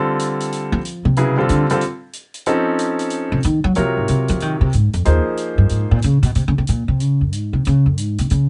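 The sound is close and nearly dry, with its top end rolled off above 10.3 kHz, giving this brief cut from a longer modal jazz piece a cool, searching intimacy. At 185 BPM in 4/4 with a swung eighth-note feel, the upright bass carries the solo, plucked pizzicato on steel strings with a woody, growly tone that sits up front and loudest in the mix. A clear grand piano supplies accompaniment close to the listener, its action noise audible, moving from G9sus4 to F7b13 before the harmony settles into Bb minor on a Bbm9 at 3.8 s. The piano drops out at 6.0 s, leaving bass and a quiet, natural-sounding acoustic hi-hat, which keeps time from the studio room until 8.4 s.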